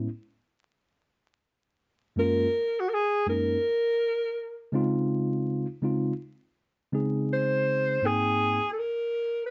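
Hip hop excerpt at 82 BPM with a swung sixteenth-note feel, relaxed and cool, in which a clean, up-front tine electric piano opens alone before a breathy, roomy alto saxophone enters at 2.2 s with a jazz-style solo full of subtone and vibrato over Gbmaj9, Dbmaj9 and Abmaj9 chords, the piano dropping out at 8.6 s, the whole mix bathed in light reverb and vinyl crackle.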